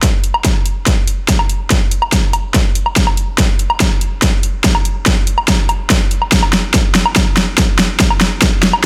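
Heavy wobble dubstep at 143 BPM in a half-time 4/4 feel, this aggressive, menacing fragment is one long build-up and drum fill across its 8.9 seconds. An up-front electronic drum kit drives it with a huge snare, bright hi-hats and woodblock, layered and tape-warm with studio reverb. Alongside it plays a distorted, layered electronic kick drum, also up front and treated with studio reverb, in a dry, loud, produced mix.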